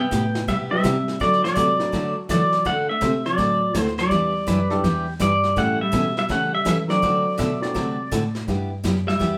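Country western swing at a swinging, down-home 165 BPM, this short cut features an up-front, twangy pedal steel guitar carrying the melody with fingerpicked slide and volume swells, while a second, compressed pedal steel adds brief lines from 4.5 seconds. A clean hollow-body jazz guitar plays a second line, a bowed, woody cello with vibrato holds the bass from a distance, a bright dreadnought acoustic guitar picks out accompaniment, and a mellow upright piano with long sustain drifts in from 0.7 seconds in the background. Brushes on a punchy, rolled-off vintage kit keep time in a wet room, as the band moves from Cmaj7 through D7, Em7 and A7 to a closing G6.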